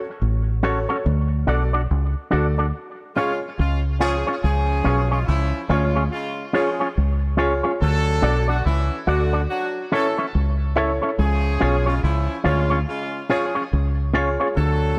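A slow, swung reggae groove at 71 BPM in 4/4 sets a hypnotic, serious mood in this piece cut from a longer track. A deep, round dub bass, fingered and foam-muted, sits up front with a punchy, amped presence, holding low over chords that move from F#m through D and C# to A. An envelope-filtered electric guitar adds dark, compressed accompaniment touched with tape echo, while a woody upright piano supplies short, intimate stabs with audible action noise. The band hits accents together from 1.1 to 4.4 seconds, and a tight horn section with light vibrato and a smooth top enters at 3.2 seconds to carry a second line, also coloured by tape echo. The arrangement shifts into a new section at 4.4 seconds, all held in a light reverb.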